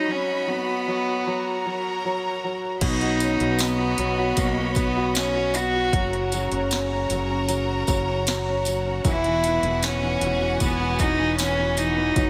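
A heartfelt pop ballad in B major at 77 BPM, this short cut opens with a bowed, sul tasto cello singing the melody through tape echo over vintage grand piano and lush, vibrato-rich studio strings. At 2.8 seconds a smooth R&B drum kit with an overdriven edge and sharp snare, a round fretless electric bass and a mellow French horn section in the background join, with a jingly tambourine following at 3.2 seconds. The music moves through Badd9, F# and Eadd9 in a small, lightly reverberant room with a faint mains hum.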